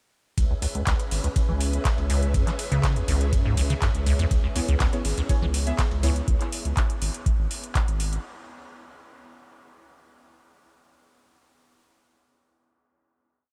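The squelchy, resonant square-wave acid bass runs its sliding, accented line under a filter sweep from 0.4 to 6.3 seconds, driving this playful, raw acid house piece at 122 BPM over an overdriven four-on-the-floor kick, metallic analog hats and claps, a gritty looped breakbeat in the background, a thick saturated sub bass, lush phased string-machine chords on Dbm7, and dark detuned chord stabs with tape wear and diffuse delay entering at 4.6 seconds, all in a light digital ambience.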